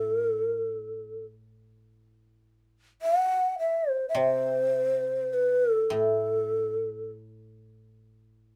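A faint mains hum sits beneath a moderate studio reverb in this short excerpt of Japanese traditional music, still and austere in a free, rubato feel. An end-blown bamboo shakuhachi carries the melody up front, breathy and hollow with vibrato and tongued notes, until it falls away at 7.1 seconds. Beneath it, a bright, woody koto played with fingerpicks keeps a dry, low accompaniment that rings on alone through 8.6 seconds.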